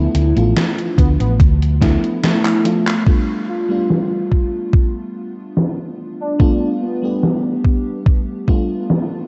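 A dark, cassette-tinged production with light digital ambience frames this melancholic, nostalgic vaporwave fragment, cut from a longer piece. A lush, dreamy FM electric piano with a soft pad layer moves from Dm69 to G9 under subtle chorus and tape echo. A round, punchy hollow-body bass with tube saturation plays only until 2.0 seconds, while a thumpy electronic kick and an overdriven, gated 80s drum machine of handclaps, hi-hat and snare sit up front, the snare steeped in gated reverb. From 1.0 seconds a velvety, detuned sawtooth lead with chorus, tape echo and vibrato sings until 8.0 seconds, and a drum fill and band accent carry the music into its second section.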